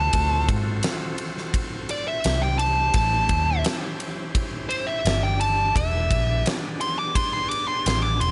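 A fuzz-drenched lead guitar takes a raunchy solo across this short blues rock and southern rock clip, its distorted, picked tone sitting up front with a digital delay trailing behind. Underneath, a dark, round, foam-muted electric bass and a huge arena drum kit with a punchy kick, fat snare and bright ride cymbal drive a straight 86 BPM groove in 4/4, while a gritty, overdriven tonewheel organ holds thick sustained chords through a slow rotary speaker. The harmony moves through D7#9, A7#9 and E7#9 with C5 and G5 power chords in between, all set in a small room reverb with a dusky top end.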